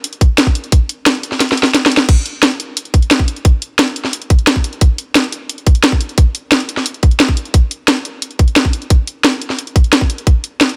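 A straight 4/4 drum and bass groove carries this mechanical, futuristic cut from a longer piece, where an up-front drum kit with a cracking snare, hi-hat and crash cymbal plays from the start alongside a tight, layered electronic kick that enters at 0.2 seconds, drops out during a drum fill between 1.4 and 2.1 seconds, then returns for a second drop, all in a dry sound.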